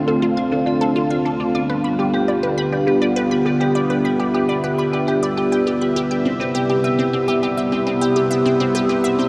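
Cosmic and mysterious, this brief cut of ambient, sequencer-driven space music moves at 102 BPM in a straight 4/4 over Dm7, G7 and then Cmaj7 at 6.3 s, with an evolving, sawtooth-and-sub-octave pad holding sustained chords through a slow filter swell, chorus and shimmer reverb, a metallic, ringing vibraphone struck with hard mallets spinning arpeggios under slow motor vibrato and delay, and a squelchy, juicy blip pluck entering at 0.1 s with a bright, up-front riff colored by phaser and delay, all set within a dark production and a huge wash of ambient reverb lasting 7.7 s.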